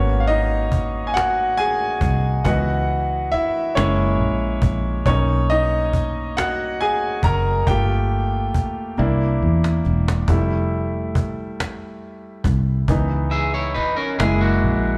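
Slow six-eight R&B at 46 BPM, yearning and sultry, taken from a longer live performance heard through a club's PA with a touch of room reverb. A clear, natural grand piano sits up front with a slapback echo, taking the solo spotlight across the whole passage over chords that move from G#m9 through C#m7 and F#7 to Bmaj7, then shift to Gm9, C9 and Fmaj9. Beneath it, a fingered electric bass gives a round, foam-muted low end, direct and amped. A snappy cajon with snares, played with soft hands and miked close, joins at 0.7 seconds and adds a fill around 9.0 seconds. At 13.3 seconds a bright, twangy electric guitar, picked and slightly broken-up with its own slapback echo, enters as a second line over the closing C#m7 to F#7 turn.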